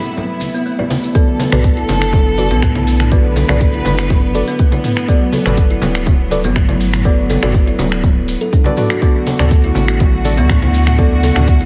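A dark, hypnotic afro house groove with a light studio reverb, cut from a longer piece and driving steadily in four. It opens on dark, sul tasto, bowed chamber strings and deep, nasal chord stabs, both breathing with sidechain pumping while a kalimba's woody, ringing thumb plucks run arpeggios through a filter sweep in the first second. At 1.2 seconds the punchy electronic kick lands up front, and the round sine sub bass follows at 1.5 seconds, with the chords moving from Bm7 to Gmaj7 and D. A layered house kit adds finger snaps, metallic hats and toms, while hard-handed congas and grainy maracas sit in the background. The stabs carry chorus and analog delay, and the kalimba's echoes trail over the pulse.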